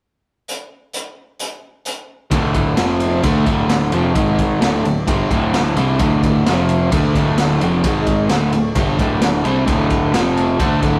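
A straight 130 BPM beat in 4/4 from a raw, gritty garage drum kit with a high-tuned snare opens this driving, swaggering classic rock cut in D minor alone before, at 2.3 seconds, a bright, crunchy up-front guitar riff and a darker hollow-body guitar with tremolo arrive together with a growling overdriven bass and a very quiet tonewheel organ on slow rotary, all in a rough rehearsal-room sound with stone room reverb.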